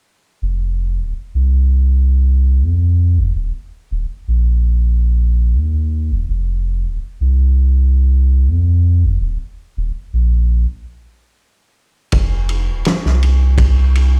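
Hypnotic and cinematic, this trip hop fragment moves at 82 BPM in 4/4 with a light swing, carried by a deep, round dub sub bass with a soft square-wave tone that sits up front and sustains from the start. The bass breaks off in a stop from 10.7 to 12.1 seconds. At 12.1 seconds a dry, acoustic soul drum kit arrives with a punchy kick, fat snare and dark ride cymbal, its mid-forward sound having a rolled-off top. The whole is heard as if played over a big sound system in a bare stone room.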